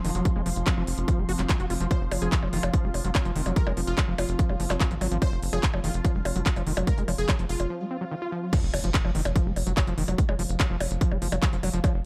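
Psychedelic trance excerpt with a driving, psychedelic mood, where an up-front heavy kick and a tight, punchy sequencer bass warmed by tube saturation drive beneath a squelchy, gritty acid bass riff with cassette tape colour, dub echo and sidechain pumping, joined by a tape-warm techno kit of smooth hats, handclaps, crash and percussion blips, a very quiet overtone-sweeping drone, an ethereal pad in the background, and a detuned supersaw stab with phaser and tape echo from 1.9 s until a brief break, where a faint swell leads into the drop at 8.5 s and a faint impact lands with it.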